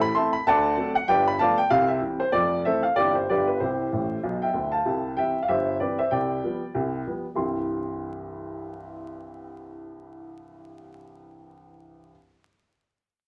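Stride piano jazz with a swinging, playful mood, this short excerpt features a solo upright piano spanning deep bass to bright upper notes, its woody, natural tone ringing with long sustain up front in the mix. The piano moves through a brisk chord progression and slips in a fill between 3.9 and 4.9 seconds before the music shifts into new sections. A wet small-room reverb and a layer of vinyl crackle give the sound an aged, intimate character.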